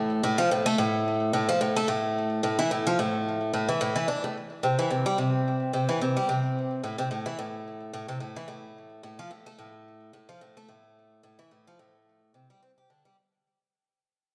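The rhythm sits in 4/4 at 109 BPM, with a light 56% swing on the sixteenths that gives this folktronica piece an easy, rolling lilt. A single picked twelve-string acoustic guitar carries everything, playing arpeggios from A2 up to G4 from the opening through 13.2 seconds. Its octave-doubled strings have a shimmering, fresh-stringed sparkle over a slightly boxy body, and small finger squeaks come through as it sits up front. A delay trails the guitar's notes, and a wet recital hall reverb with a 1.4-second decay places it in an airy space, tuned a touch low to A4 = 438 Hz. Pastoral and hopeful in mood, this short section is heard as a fade-out across its full 13.4 seconds, cut from a longer piece.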